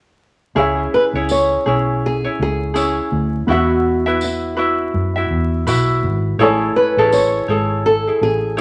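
Tender and wistful, this short acoustic pop excerpt moves at 82 BPM in 4/4 with a gentle sixteenth-note swing, opening on a brief silence before a soft-focus bed of dark, mellow upright piano in the background, bright fingerpicked ukulele and a round, foam-muted vintage electric bass enters at 0.6 seconds over C#m, Esus2 and Amaj7. A small, fingerpicked nylon-string guitar carries the melody from 0.9 seconds, and a close, jingly tambourine joins at 1.3 seconds. A wet studio reverb and a layer of vinyl crackle give the sound a nostalgic, lived-in glow.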